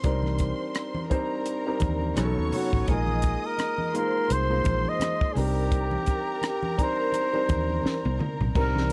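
Smooth and cinematic, this short cut from a longer piece is lush 1970s-style soul in C minor at 85 BPM, set in 4/4 with a gentle swing on the sixteenths. A compact cocktail drum kit sits up front with a punchy kick, a high-tuned snare, rim clicks, toms and dark hi-hat and crash cymbals. Low-tuned congas ring softly in the background under soft hands, while a vintage foam-muted electric bass gives a round, dark, amped pulse. A concert grand piano supplies intimate accompaniment with audible action noise and long sustain, and a studio string section adds a close, bowed second line played sul tasto with vibrato and a soft attack. At 2.5 seconds a breathy flugelhorn takes the melody with a mellow, whispered tone and light vibrato. The harmony moves from Cm9 through B9 and Bb7sus4 back to Cm9, and a drum fill arrives at 7.8 seconds, all within a dry, close recording and small room ambience.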